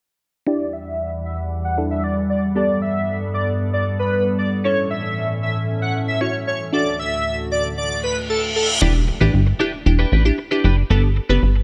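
Pop in an upbeat, summery mood, cut from a longer piece. It opens with an airy, dreamy lead carrying the melody over crisp, warbling wavetable chord stabs and an ethereal FM pad with long-release sustained chords, all moving through Em7, Gadd9, A and D under a filter sweep. A reverse cymbal at 8.1 s leads into an electronic impact at 8.8 s, where a bright, twangy twelve-string electric guitar riff and a punchy, funky analog bass sitting up front join the continuing chord stabs, lightly touched by reverb.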